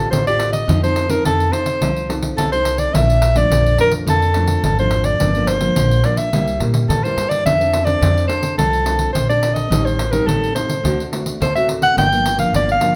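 Lively and yearning, this samba and choro excerpt at 106 BPM in 4/4 puts a subtoned, jazz-style soprano saxophone up front on the melody over a full-bodied, thumb-plucked nylon-string guitar, a woody, growly pizzicato upright bass and a jingly pandeiro played with soft hands, the band heard live together in a large studio with moderate reverb as the chords move from Dm7 through Bbmaj7 and F6 to Gm7.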